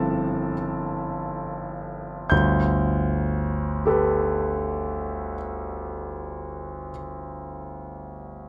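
Impressionist classical solo piano in G major, dreamy and hazy, moves in a rubato 3/4 at roughly 31-41 BPM, where a clear concert grand spanning G1 to A6, heard intimate and up front through close, detailed microphones with light reverb, deep bass, long sustain and audible action noise, slows over an opening Fmaj7/G before settling onto Gadd9 at 2.3 seconds in this brief cut from a longer piece.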